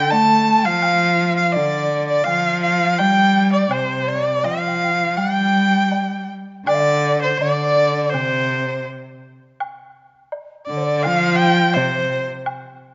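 Heard in the moderate bloom of a scoring stage with a softened top end, this festive, graceful fragment of Chinese traditional chamber music moves in free rubato: an up-front, focused erhu sings the melody with vibrato and portamento, a close, bowed cello carries a second line beneath it, a hollow bamboo dizi with a buzzing membrane hovers distantly in the background, and a dry woodblock enters at 0.1 seconds.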